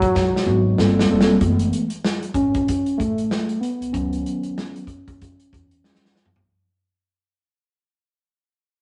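A rough rehearsal-room recording with a stone room's moderate reverb and a dulled top end opens this cool, mellow jazz-hop excerpt at 95 BPM, swung on the sixteenths in F# dorian. A vintage drum kit with a tight kick and a medium-tuned snare plays fills up front over woody pizzicato upright bass, while a soft-attack trombone with vibrato and scooped notes sings a brief line until 0.8 s. A clean tine electric piano heard through its built-in speakers then takes a solo at 1.4 s over rootless minor-eleventh and suspended-ninth chords as the piece fades out.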